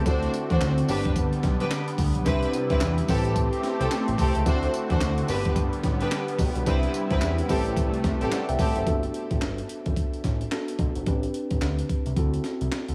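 A swung, bouncy new jack swing groove rides on a gritty, compressed breakbeat kit with a thumpy kick, high-tuned snare, handclaps, hi-hat and tambourine up front, beneath a fat, detuned analog bass with a moving filter, a mellow tine electric piano in shimmer reverb, and bowed strings with vibrato stabbing through digital delay, while a lush, airy unison pad with chorus and phaser holds sustained chords until 8.9 s, when this confident R&B excerpt shifts to a richer Gmaj9 and Am11 passage.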